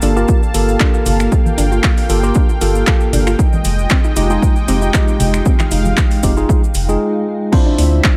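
This hypnotic, warm deep house excerpt at 116 BPM opens with a detuned sawtooth pad holding smooth, sustained chords and a soft, round pluck playing arpeggios in the background, both carrying chorus and sidechain pumping. A clean tine electric piano adds stabs through delay, and a hollow, dark, organ-like FM bass with a fast, decaying attack sits up front. A layered drum kit brings metallic hi-hats, finger snaps, handclaps and crash cymbal with a tape-tinged sheen, swung on the sixteenths, while grainy maracas sit close and dry behind, and a very quiet granular cloud pad blurs and evolves underneath. A dry, punchy electronic kick lands at 0.3 seconds, and bright congas played with soft hands join at 1.1 seconds. The harmony moves from Gm9 to Fm9 and then Dm9, with a brief break at 7.0 seconds, all set in a digital ambience.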